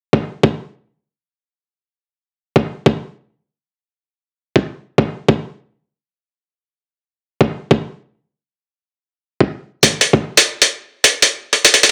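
Glitch hop at 99 BPM in 4/4, with a swaggering, playful 16th-note swing, this excerpt opens on an up-front, sampler-style electronic kick drum that sounds thumpy, gritty and pitched down, carrying a high-pass filter and studio reverb from 0.1 to 10.3 seconds. At 9.8 seconds a compressed, tape-warm electronic hi-hat enters, also pitched down and sampler-style, briefly overlapping the kick before carrying on by itself to 11.9 seconds. The overall sound is largely dry.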